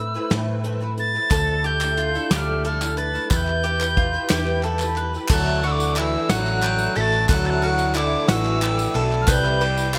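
A bright, 1980s-style digital sheen and a moderate plate reverb frame this short cut from a longer indie folk piece, a yearning, stirring arrangement in 6/8 that builds at 60 BPM in dotted quarters. An airy tin whistle with vibrato and a tongued chiff carries the melody high above, trailed by delay. Beneath it, a boxy, ladder-braced acoustic guitar with old strings picks out the accompaniment through an ensemble chorus. A round, amped hollow-body bass sits up front, and a brushed kit with dark cymbals and a punchy kick comes in almost at once. At 1.3 s a woody, double-strung mandolin adds arpeggios, joined by crisp, compressed handclaps and a jingly tambourine in the background, as the chords pass from Amadd9 through Dmadd9 to Em. At 5.3 s the harmony settles on Dadd9 while a clear, distant trombone plays a classical-style second line and a very quiet, reedy harmonium breathes sustained chords, before a final turn to Cmaj7.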